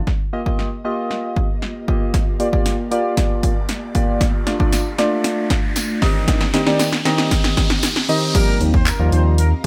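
A straight 4/4 house beat at 116 BPM, with a punchy kick and snare, claps, hats and crash, drives this confident, bittersweet dance-pop excerpt through a drum-filled build-up over Ebadd9, Gm7, Dm and Cm/Eb, where round, chorused electric-piano-like synth keys pump against the kit, a very quiet airy pad sustains chords, an electronic riser enters at 2.3 seconds, and a jingly tambourine shimmers in the background until a drop at 8.3 seconds brings in a distant, roomy horn section melody with light vibrato and, at 8.6 seconds, a glossy, up-front chorused synth bass on Eb, all under light reverb.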